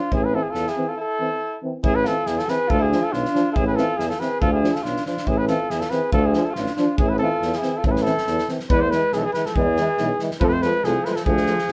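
A mellow, up-front trumpet carries the melody with light vibrato from the very start, shadowed by a punchy, distant alto saxophone second line, as a Balkan brass band settles into a bittersweet, virtuosic 2/4 groove at 140 BPM in A harmonic minor. A roomy tuba holds the bass, a loose acoustic drum kit adds a fat snare and punchy kick, and a euphonium sits in the background while a present trombone fills out the accompaniment. After a break at 1.0 seconds the band swings between A minor and D minor in a wet, live-room ambience, then moves to E and F from 8.7 seconds in this excerpt from a longer piece.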